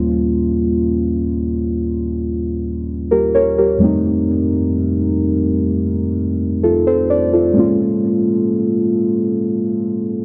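A straight, unhurried 4/4 pulse at 64 BPM sets a slow R&B mood of longing and sensuality, tuned slightly low to A4 = 436 Hz. A single part, muted felt-like synth keys, plays alone across the whole 10.2-second fragment of a longer piece, spanning Eb2 to D5. Its tone is soft and full-bodied, with a fast attack that decays, a sub-octave weight beneath, and a noise layer giving it an intimate, felt-dampened character. Chorus and a digital delay thicken the sound, which sits up front in a moderate recital-hall reverb. The harmony moves from Eb7 to F7 at 3.8 seconds and settles on Bbm7 at 7.6 seconds, leaving the phrase hanging in a dark, yearning mood.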